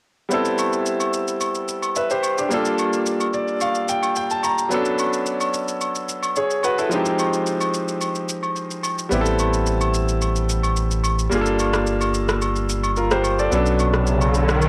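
Amapiano at 109 BPM in a straight 4/4, this hypnotic, soulful passage is cut from a longer piece and built on a bright concert grand piano that carries the accompaniment up front from 0.3 seconds, its brilliant tone given a cassette-tape coloring. Underneath, an electronic shaker and rim click form a layered, produced, tape-warm beat, while agogo bells, heard alongside maracas and a group handclap, sit acoustic and in the background from 0.6 seconds. The piano adds a fill between 3.1 and 4.7 seconds as the harmony moves through minor seventh chords, Am7, Gm7, Bm7 and Fm7. At 9.1 seconds a round, sine-like sub bass arrives, deep and sustained with a fast attack, sitting up front in the mix. A short electronic riser closes out the final moments from 14.0 seconds, all heard in light reverb and small-room ambience with the intimate feel of a home recording on cassette.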